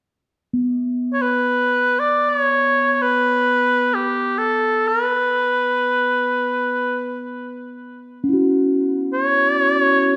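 World meditation music, spacious and contemplative, cut from a longer piece: a mellow bronze singing bowl struck with a felt mallet rings softly from 0.5 seconds with slow metallic beating, and at 1.1 seconds a clear, classical-style solo oboe enters up front with light vibrato and a trailing delay, both set in a reverberant recital-hall space.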